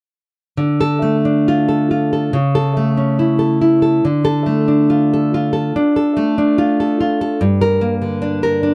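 A fingerpicked nylon-string guitar opens at 0.6 s, its fresh strings giving a bright, up-front classical tone as it plays alone through to 8.7 s. This brief romantic passage, cut from a longer piece, moves in a rubato 4/4 with a passionate yet melancholic mood. The harmony travels from Dm to A/C#, back to Dm, and then reaches Gm at 7.4 s, all within a range from G2 to Bb4. A little finger squeak can be heard along the way. The sound is that of a dry, close 1970s-style studio recording, touched only by light reverb.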